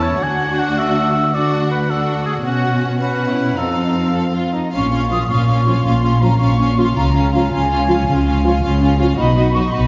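Adventurous and triumphant, this cinematic 12/8 excerpt sets a soft, sul tasto chamber violin melody over a lush studio violin line, focused violas and expressive, up-front cellos, with a smooth-topped solo oboe adding a second line until 4.2 s, before pure-toned flutes and woody double basses join at 4.7 s and a dark horn section enters in the background at 5.1 s, all heard within a wet scoring-stage reverb and a dark, warm production.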